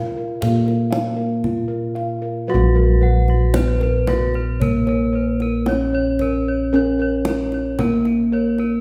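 Round, beating bossed gongs anchor the bass of this shimmering, hypnotic excerpt of Javanese gamelan in Bb pelog at a slow 57 BPM, where a mellow, airy bronze metallophone carries the melody with padded mallets, brighter up-front bossed gongs ring out arpeggios, a tight kendang keeps time from 0.4 seconds, and a second horn-mallet metallophone joins with bright arpeggios at 2.5 seconds, the whole ensemble bathed in the reverb of a resonant recital hall.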